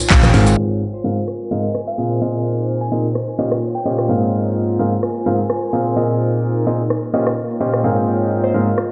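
A swung 128 BPM groove in 4/4 from a punchy, overdriven analog drum machine, with handclaps, hi-hat, rim click and shaker, drives this joyful, feel-good piano house in Ab major, opening on a band accent at 0.1 seconds where a fat, detuned sawtooth bass and ringing, dry tambourine and congas sound briefly before dropping out by 0.6 seconds. Up front, a clear, intimate baby grand piano with audible action noise carries the riff through pumping sidechain and delay over jazzy chords like a rootless Eb13/Bb, Ab69 and Bb9sus4, while a warbling, nostalgic tape-like pad with chorus sustains beneath. A crystalline wavetable pluck adds a quiet melody from 0.9 to 4.2 seconds, returning briefly near the end, all heard through lush hall reverb and a stone room with a dulled top end, cut from a longer piece.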